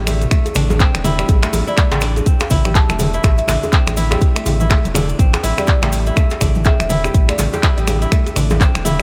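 This afro house excerpt moves at 123 BPM in 4/4 with a 59% swing on the sixteenths, settling into a hypnotic, earthy groove in A minor over an Am7 chord. A short drum fill opens the passage before a punchy, up-front electronic kick arrives at 0.3 seconds. The house kit adds finger snaps, handclaps, bright hats and toms, while hard-handed congas sit in the background beside a tight, cracking djembe with a vintage, band-limited edge and a grainy, mellow cabasa. A round sine sub bass with a fast attack sustains deep notes and pumps with sidechain compression, as does the crisp, ringing fingerpicked kora, whose arpeggios carry tape echo. From 1.7 to 7.8 seconds a woody, buzzing marimba on hardwood bars plays an airy melody in the background, also touched by tape echo. Light reverb and small-room ambience frame the mix.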